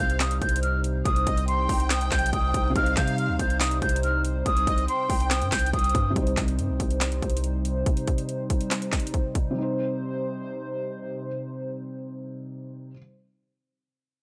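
A half-time trap groove in 4/4 drives this eerie, melancholic hip hop fragment, with an electronic drum kit up front: a hard-clipped kick, sharp snare, metallic hi-hats and handclaps. Beneath it, a deep, boomy 808-style bass with a sine body and a noise layer hits with a fast attack and decays. A breathy jazz flute carries the high melody in a straight, expressive tone with a soft attack, softened by a low-pass filter. A lush studio violin section plays a smooth, vibrato-laden second line, touched with tape echo. Filling out the harmony, a felt-muted upright piano adds dark, intimate, vintage accompaniment, while a hollow, nasal, detuned pad holds sustained chords with chorus. The flute and violins drop out at 6.1 seconds, the bass at 7.8 and the drums at 9.4, leaving the piano and pad in a dry, gritty room sound until the cut.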